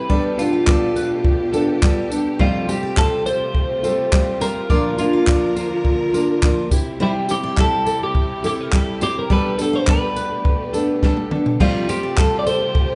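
A bright, twangy twelve-string electric guitar carries the melody over a fingerpicked classical nylon-string guitar with audible finger squeak and a rich, bowed string section with vibrato and soft attack in the background, opening this carefree, heartfelt acoustic pop excerpt. A compact cocktail drum kit sits dry and up front with a punchy kick, high-tuned snare, dark cymbals, toms, handclaps and tambourine. Meanwhile, a picked steel-string acoustic guitar adds full-bodied arpeggios behind, over chords moving from Gadd9 through Fadd9, Bb and C, until a drum fill at 11.0 seconds leads back into the opening material at 11.6 seconds under light reverb.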